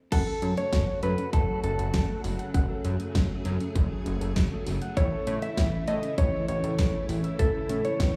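At a straight 99 BPM in 4/4, this bright, wistful synth-pop fragment pairs a punchy electronic drum kit and fat, detuned analog bass with a clean, dark electric guitar melody through analog delay, silky ensemble-chorused string-machine chords and soft, round pluck arpeggios in the background, moving from F#m to A at 5.0 seconds in an echo-heavy mix with small room ambience.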